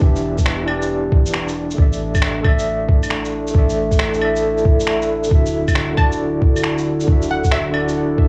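Future garage in a wistful, rainy mood, this short cut from a longer piece swings its sixteenths over a muffled, thumpy kick and a tape-softened layer of shaker, finger snaps and claves, both re-recorded in a large room. Up front, a barky, overdriven tine electric piano carries fast tremolo, sampler grit and analog delay. It shares sidechain pumping with a warbling, detuned pad carrying chorus and a deep, round 808-style bass as the chords move from Em7 through Asus4 to Dadd9. From 6.0 to 8.0 seconds, a glassy wavetable pluck adds a brief crystalline melody with chorus and analog delay.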